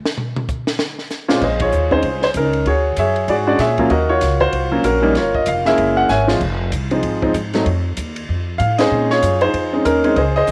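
Cool and smoky, this excerpt of an up-tempo jazz piano trio swings at 192 BPM in 4/4 in Bb minor. A dry, compact cocktail drum kit opens with dark cymbals, a high-tuned snare and a punchy kick. A smooth, vintage-toned concert grand enters up front at 1.3 seconds, and a woody, thumpy pizzicato upright bass joins at 1.4 seconds. Through chords such as Bbm11, Bb7alt, Ebm9 and Gb9, the band hits shared accents and the drums take a short fill at 6.1 seconds, all set in a small room with light reverb.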